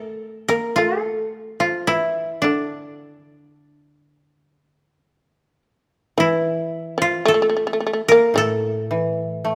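Japanese traditional chamber music in A miyako bushi, calm and austere, moving at a rubato 55 BPM in 4/4 in this short excerpt from a longer piece. A dry, woody koto played with fingerpicks carries the melody up front, while a bright, buzzing, plectrum-plucked shamisen adds a percussive second line an octave below, and a second koto enters at 6.2 seconds with a low accompaniment. Close, detailed microphones capture the trio in a moderate recital hall reverb.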